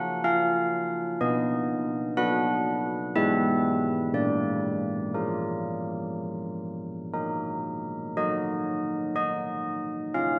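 A slow, straight 3/4 pulse at 61 BPM carries this solemn, wintry classical tune for church bells, a fragment of a longer piece in Eb minor tuned to A4 = 436 Hz. Solo carillon bells with a bronze ring, a minor-third overtone and a mellow, padded-clapper strike sit up front, passing from Bbm through B and E/G# to Bb before settling on Ebm at 7.1 seconds. A wet church reverb with a 2.5-second tail surrounds the bells through the full 10.4 seconds.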